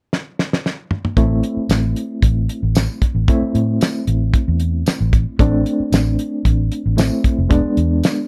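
A straight-eighth soul blues groove in 4/4 opens this brooding, soulful cut from a longer piece, beginning with a drum fill on a damped 70s kit that sounds dry and acoustic, with a fat snare, a tight kick, hi-hat, tambourine and toms. At 1.2 seconds the band settles onto an A minor chord as a vintage muted fingered electric bass enters, dark, round and foam-muted, its amped tone anchoring the low end. Alongside it comes an overdriven reed electric piano, reedy and gritty through a combo amp, pulsing with a fast tremolo in its middle register. The drums, bass and electric piano all sit up front under a light reverb. The harmony holds on A minor until it turns to E7 at 7.5 seconds, just before the passage breaks off.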